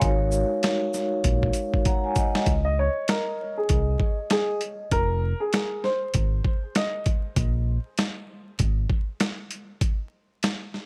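A metallic, ringing vibraphone with a slow motor vibrato opens this dark, moody boom-bap hip-hop excerpt, set over a round, punchy dub bass and a gritty, overdriven sampler-style drum kit with a thumpy kick, medium-tuned snare, hi-hat and shaker. The drums have a swung sixteenth-note feel, and a drum fill leads into the next section at 2.5 seconds, where the vibraphone drops out. A mellow, woody upright piano with short sustain then carries the melody, colored by tape echo and filtering, until 7.0 seconds. The bass drops out shortly after, leaving the compressed, small-room drums to play alone through the closing moments over a steady bed of vinyl crackle. The harmony drifts through suspended and minor chords, and the dry, up-front mix gives the tape-tinged vibraphone and piano a dusty, close-up character.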